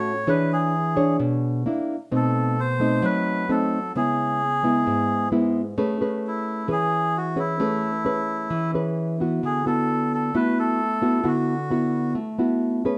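Relaxed and romantic, this bossa nova moves at 131 BPM in a straight 4/4, settling into A major from 5.8 s and drifting through lush chords like Amaj9 and D69. A reedy, breathy melodica carries the melody up front with a touch of plate reverb, ending at 12.1 s, while a thumb-plucked nylon-string guitar with a classical tone accompanies it until 13.0 s. The small, reverberant room and rough home-demo mix give this brief cut from a longer piece an intimate, homespun feel.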